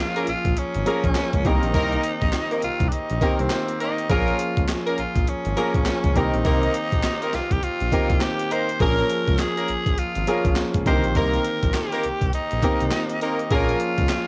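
New jack swing R&B at 102 BPM with a swung sixteenth feel, punchy and confident, moving between Bbm7 and Cm7 in this short cut from a longer piece. A raspy, edgy tenor saxophone carries the melody up front with scooped notes and vibrato, over a clear, polished concert grand piano, a jazz-style horn section playing stabs in octave doubling, and a gritty, compressed sampler-style breakbeat kit with a thumpy kick, snare, hi-hat and handclaps. A smooth sawtooth-and-triangle synth bass with a fast attack holds the low end, while the saxophone, piano, horns and drums carry a cassette tape coloring, and the home recording sits in light reverb and small room ambience.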